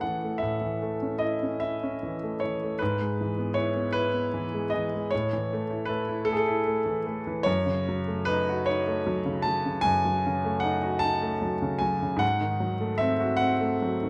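This is a romantic classical nocturne for solo piano, melancholic and yearning in mood, moving at a slow 51 beats per minute in dotted quarters within a 12/8 metre, shaped by free rubato. A warm grand piano carries everything alone, ranging from F#2 up to A5, with an intimate, natural tone and the sound of its action audible beneath the notes. The harmony opens on A, passes through E/G# and returns to A at 5.1 seconds, then darkens through D#m7b5/F# before settling at 12.2 seconds on a tense G#7b9 that leaves the phrase unresolved. The instrument sits up front, captured by close, detailed microphones, while a moderate recital hall reverb of about 1.4 seconds lends a gentle sense of space. Lasting just over 14 seconds, this fragment is cut from a longer piece.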